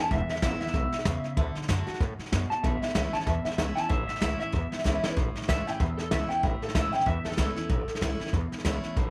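A twangy, slightly broken-up electric guitar through a small old amp leads this rollicking, rowdy rockabilly cut at 190 BPM with a swung feel in A major, playing a clean solo over the first 5.2 seconds with lush chorus and tape echo before it stops at 8.3 seconds. Beneath it, a bright, full-bodied jumbo steel-string acoustic guitar picks the accompaniment with audible finger squeak, while a woody, thumpy pizzicato upright bass on gut strings holds down the low end as the harmony moves through E, D and A. An up-front jazz kit played with brushes, with a boomy kick and medium-tuned snare, drives the groove and throws in a fill just before the 5.2-second mark, all in a small, intimate room.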